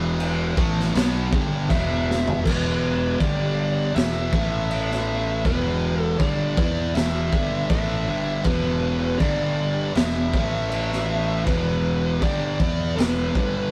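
Hypnotic and ominous, this stoner and doom metal excerpt from a longer piece opens with a bright, double-tracked fuzz guitar riff up front over a growly, overdriven fingered bass and a gritty garage drum kit with a punchy kick and dark cymbals in a small, pumping room. A drum fill at 2.1 seconds leads into the main section, while a dark, compressed fuzz lead guitar carries a high melody from 1.7 seconds onward. The rough rehearsal-room sound has light reverb and warm saturation throughout.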